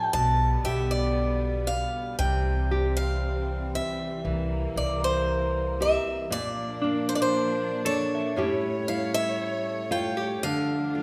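Acoustic folk-pop ballad at a slow 58 BPM in 4/4, heartfelt and intimate, cut from a longer piece and moving from G/B and C to Bb, A7 and Dm. A bright, boxy picked acoustic guitar plays the melody up front in a swing style, over fingerpicked nylon-string guitar with finger squeak, a close chamber string section holding bowed sul tasto chords with light vibrato, and a woody, growly pizzicato upright bass that stops at 6.0 seconds. A dark, clean electric guitar adds tremolo arpeggios from 0.7 to 9.1 seconds, inside a wet scoring-stage reverb.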